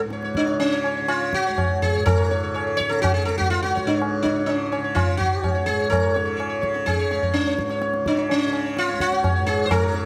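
Close, detailed microphones and a light reverb capture this serene, meditative Hindustani classical passage, cut from a longer piece, which speeds up over its 10.1 seconds. A bright, softly plucked tanpura drone sits beneath the up-front sitar, whose plectrum-plucked melody sounds round and buzzing, with shimmering sympathetic strings. A low-tuned, ringing tabla, close and dry, enters with the sitar at 0.1 seconds.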